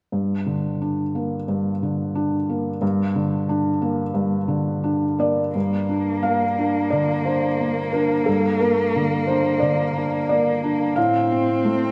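Neoclassical piano and strings with a fragile, melancholic mood, this excerpt from a longer piece moves with a loose, rubato feel as a soft, felt-muted upright piano sits up front, playing mellow, intimate accompaniment across its range. At 5.6 seconds a single bowed cello enters as a second line, rich and smooth with vibrato, sitting lower in the mix beneath the piano. The harmony rests on G minor before shifting to F over A at 11.0 seconds, all bathed in a lush concert hall reverb.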